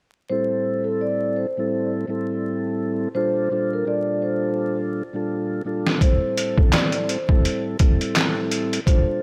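This moody, tough boom-bap hip-hop piece moves at 84 BPM in 4/4 with a swung sixteenth-note feel, and it is cut from a longer track. From 0.3 seconds, a soft-mallet vibraphone carries the melody between A4 and D5, its metallic, ringing tone sitting mid-forward and softened by filtering and a digital delay. Beneath it, a mellow tonewheel organ plays flute-like, clean accompaniment up front through a slow rotary speaker. The harmony moves from Am7 to Gm9/Bb at 3.2 seconds and then returns to Am7. At 5.9 seconds a trip hop sampler-style drum kit enters up front, with handclaps, hi-hat, a thumpy kick and a medium-tuned snare. The kit sounds pitched down, muffled and overdriven, as if re-recorded in a small room. Light reverb and a bed of vinyl crackle give the whole recording a dusty, late-night atmosphere.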